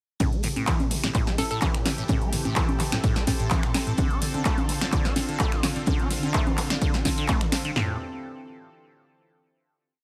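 Acid house in A minor at 127 BPM with a trippy, driving mood, built on a punchy analog drum machine's four-on-the-floor kick, an electro drum machine's metallic hats, claps, snaps, congas and backbeat, and a very quiet, dark acoustic jazz kit's looped breakbeat, while a squelchy, resonant acid bass line with accents and slides runs through phaser, overdrive and tape echo beneath a lush, warbling detuned sawtooth pad holding Am7 and Dm7 chords, a hollow square pluck briefly appears at 1.4 seconds, and the piece settles on a final Am7 chord at 7.8 seconds in light reverb.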